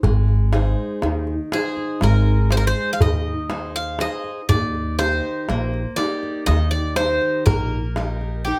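Greek folk played by a bouzouki band, this short excerpt moves at 121 BPM in 9/8 with a straight feel, its mood wistful and dark, the tuning set slightly low at A4 = 438 Hz. Upright bass, picked steel-string acoustic guitar and darbuka open together, the bass sitting up front with a woody, pizzicato tone from steel strings while the guitar supplies bright, concert-style accompaniment. The darbuka, with its clay shell and natural skin, carries a live-room character. At 1.5 seconds the Greek bouzouki enters up front with the melody, its double strings ringing metallic, some of them octave-doubled, in a range from G4 to F5. The harmony rests on Ab before moving to Eb at 4.5 seconds, and the whole is captured with close, detailed microphones and light reverb.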